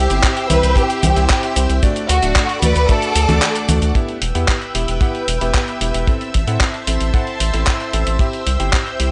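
A straight, danceable pulse drives this melodramatic italo disco excerpt, with a tight, dry acoustic kick sitting up front and a gritty, compressed sampler-style kit of cabasa, congas, handclaps and hi-hat set in studio reverb. Underneath, a round analog bass with a fast attack and tube saturation holds the low end, its deep, wave-folded tone evolving as it sustains. A lush string machine spreads sawtooth chords with a sub octave and ensemble chorus across the whole clip, while a clangy, cutting electric grand piano punches in with vintage chorused stabs. A symphonic violin section carries an expressive, vibrato-laden bowed melody with tape echo, falling away at 3.7 seconds. The kick drops out briefly at 3.4 seconds before the harmony turns to E minor at 4.0 seconds, and the whole mix carries the dry, gritty character of a small-room hardware recording.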